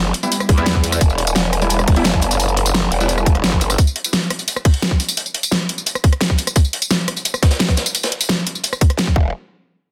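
The sound is dense and heavily limited, with a light digital ambience around a dark, tense piece of technical drum and bass cut from a longer track in straight four. A growling, aggressive bass, saturated and chorused with a sidechain pump and a formant-filtered wobble, sits up front on an E minor chord until 3.8 seconds, then briefly returns at the very end. Above it, a bold orchestra-hit-like synth stab, built from detuned sawtooth unison with a noise layer and ring modulation, punches in with its own reverb and delay and stops at 3.1 seconds. The drums run throughout: an overdriven, tight electronic kick leads the mix, while a layered dubstep kit adds a huge snare, rim click, tambourine and bright hats with a tape-like tint. Behind them, a gritty, rolled-off acoustic breakbeat kit from a small room supplies a saturated, medium-tuned snare and filtered hats in the background.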